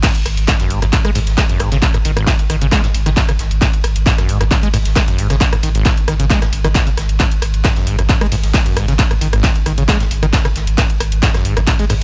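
This is a driving, relentless stretch of peak-time techno at 134 BPM in a straight 4/4, cut from a longer piece, and everything enters together at the start. A heavy, overdriven electronic kick sits up front, with a layered techno kit of hi-hat, ride, crash, handclaps and rim click, its hats and cymbals pumping against the sidechain. Underneath, a deep, round sine sub bass holds a sustained G#1 through a low-pass filter, pumping with sidechain compression. A squelchy, resonant sawtooth acid bass riff moves between G#1 and G#3 with filter sweeps and decaying notes, colored by subtle chorus and tape echo. Very low in the mix, an acoustic vintage kit of hi-hat, ride and snare adds a saturated, dark-cymbaled room texture with a rolled-off top, while the whole recording keeps a dry, gritty hardware character under a studio reverb.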